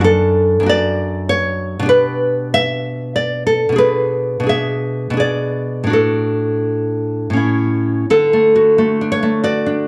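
A fingerpicked nylon-string guitar plays alone and up front in this nostalgic, romantic classical solo in D major and 3/4, drifting with rubato between 78 and 102 BPM across a range from F#2 to E5, moving through D/F#, G/B, E7/B, D/A and A before a new section begins on D at 8.1 s, all set in a moderate recital-hall reverb with a dark, warm production in a short cut from a longer piece.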